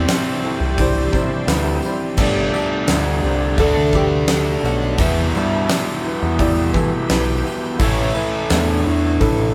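A plectrum-plucked oud with a woody, double-strung voice carries the melody over a biting overdriven guitar riff, a quieter distorted guitar riff, growling overdriven bass and a huge arena drum kit with a fat snare and punchy kick in this brooding, swaggering classic rock excerpt at 85 BPM in E minor. A very quiet tonewheel organ holds shouting, lightly overdriven chords through a slow rotary speaker, while a jingly tambourine and a background upright piano fill out the band, the piano stepping forward with a fill from 0.8 to 2.2 seconds. The chords move from Cadd9 through Gsus2 and D to Em and A, and the whole band sounds as if playing live together in one room with light reverb.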